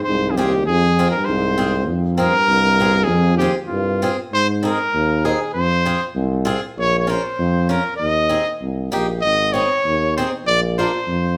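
Recorded live in one large room with a wet studio reverb, this jolly, festive alpine folk dance moves at 98 BPM in a straight 2/4, shifting from F minor to Ab major at 4.3 s in a cut from a longer piece. A clear, up-front trumpet carries the melody with light vibrato and a soft, classical attack over a roomy tuba bass, while a dark, smooth-topped euphonium plays a second line until 4.1 s. A bright, boxy acoustic guitar with fresh strings, picked in swing style, fills in the accompaniment.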